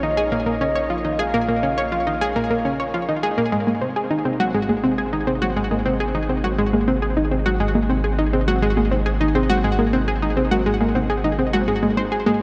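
A bright, detuned analog pluck sits up front with a riff from Ab3 to Db5, bathed in chorus, shimmer reverb and delay, driving this expansive, mysterious ambient, sequencer-driven space music at 103 BPM in 4/4, cut from a longer piece. Beneath it a round, deep analog bass fades in, holding between Ab1 and Bb1, while a soft, octave-layered synth lead with vibrato sings a brief melody until 2.9 s, and a warbling, lo-fi dusty pluck enters in the background with arpeggios at 3.7 s. The dark production sits inside a huge, wet reverb as the harmony moves from Bbm to Ab.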